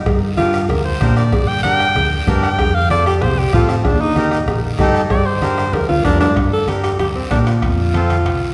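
Driving and passionate, this straight-feel cumbia excerpt at 190 BPM in G minor sets a clear, close-miked alto saxophone solo up front from 0.4 seconds over a reedy accordion, a round, punchy hollow-body electric bass, a soft-beater bombo, very quiet bright congas, raspy guiro and ringing, saturated cowbell and timbales in the background, all moving through Gm, F and Eb in a reverberant concert hall, with a drum fill at 5.7 seconds leading into a new section at 6.4 seconds.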